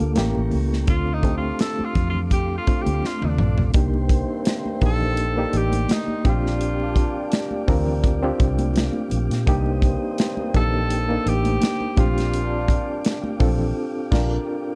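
Lush 1970s-style soul with a bittersweet, cinematic mood, this swung excerpt sets a clear, scooping tenor saxophone melody over gritty overdriven electric piano with fast tremolo, a soft organ on slow rotary speaker in the background, a round foam-muted bass, a bright-cymbaled studio drum kit, very quiet high-tuned congas, and cup-muted trombone stabs entering at 3.7 seconds, all in a dark, dry production that ends on a band accent at 13.8 seconds.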